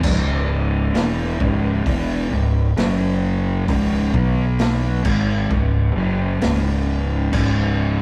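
A rough rehearsal-room recording with moderate small-room reverb frames this heavy, hypnotic stoner and doom metal excerpt at 66 BPM in C# minor, where an up-front thick fuzz guitar picks a dark, distorted riff through C#m, F#5, C#5 and B5, an overdriven fingered electric bass sits forward with warm fuzz, a raw garage drum kit of punchy kick, snare, hi-hat and crash pumps with a gritty, rolled-off top until 7.5 s, and a second fuzz guitar in the background appears at the very start and returns at 7.3 s.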